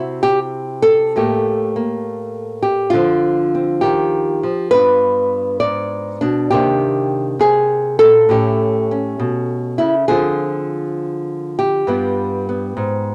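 A lone nylon-string guitar, fingerpicked and up front with a small, warm acoustic tone softened by cassette tape, opens this smoky solo jazz excerpt at a 67 BPM swing, moving from C through lush chords like Ebmaj13/D and Cm9 to a closing G7 across 13.1 seconds in a lightly reverberant home-recorded room.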